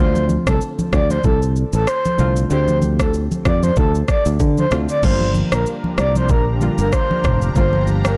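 A swung sixteenth-note groove at 95 BPM drives this sultry, hypnotic afrobeats excerpt in G minor, where an overdriven electronic drum kit with a knocking kick, rim click, shaker, toms and crash sits up front alongside a growly, punchy fingered electric bass, bright congas and round analog keys with a filter sweep in the background, while a breathy, flute-like synth lead carries the melody with vibrato and tape echo, and a lush, detuned unison pad with phaser and sidechain pumping enters at 5.3 seconds, just after the chords move from Dm7 to Gm7, all in a dry, blown-out mix.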